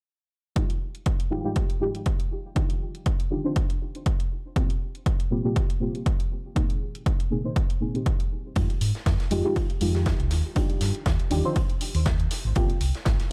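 Deep house at 120 BPM in F dorian with a swung 16th feel, this deep, hypnotic excerpt opens at 0.6 s on a mellow, detuned chord stab with a sub octave, chorus, phaser, delay, sidechain pumping and a filter sweep, moving through Fm9, Ebmaj9, Bbsus2 and Bb9sus4 over a punchy, up-front analog kick and a faint electronic hi-hat, both carrying a large-room sound, until at 8.6 s a dark, round, tube-saturated fingered electric bass and a gritty acoustic garage kit of hi-hat and medium-tuned snare in a bright stone room join the groove.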